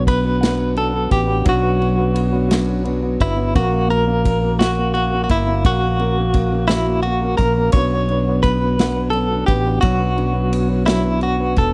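A bright, clean electric guitar carries the melody up front, its compressed, picked tone colored by tremolo as it moves between E4 and C#5. This is a dramatic, melancholic pop ballad in 6/8 and B minor at 57 BPM with a straight feel, built on chords of Bmadd9, F# and back to Bmadd9. Beneath it, an upright piano with a woody, intimate sound, long sustain and audible action noise plays the accompaniment. A fingerpicked jumbo steel-string acoustic guitar with fresh strings sits in the background with full-bodied arpeggios. A dark, round fretless bass with analog chorus holds the low end up front, and an acoustic drum kit played with bundle sticks comes in at 0.1 s with a punchy kick, medium-tuned snare and ride cymbal. The sound is dry and close, in the manner of a 1970s studio recording, and the passage is cut from a longer piece.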